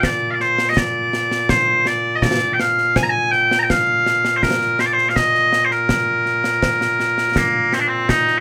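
Scottish traditional pipe music in a straight 2/4 at 82 BPM, ceremonial and stirring, set in Bb mixolydian with the pipes tuned to A4 = 442 Hz. Loud, bright bagpipes carry the melody from start to finish, piercing and continuous up front across a span from Bb2 to Bb5, while a concert snare drum and concert bass drum sit close and dry beneath them with dark cymbals. The rough home demo mix places the whole short cut from a longer piece in a small room with moderate reverb, as the opening section returns at 7.4 seconds.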